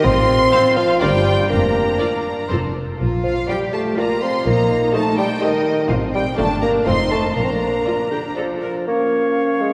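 Washed in a wet church reverb, this short excerpt of a playful, whimsical film cue moves in a straight 3/4 at 123 BPM in Bb major, with a mischievous, magical air. A mellow bassoon sits up front carrying the accompaniment over a rich double bass section and a dark cello section. Meanwhile, a very quiet violin section holds the smooth melody, a second violin section adds a lush, focused line above it, and a clear viola section fills the middle. At 8.9 s the harmony turns to Db as a bright oboe, a present clarinet and a hollow silver flute in the background join for a brief second line until 9.7 s.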